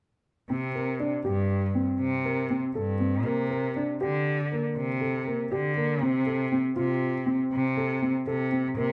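A rich, focused bowed cello with vibrato carries the bass up front while a dark, mellow grand piano with audible action noise and short sustain plays intimate arpeggios, both from 0.5 to 8.9 s, in this shimmering, playful contemporary instrumental passage cut from a longer piece, moving at 240 BPM in eighths through a straight 11/8 over C5, Gm/C and F/C chords, captured with close, detailed microphones and light reverb.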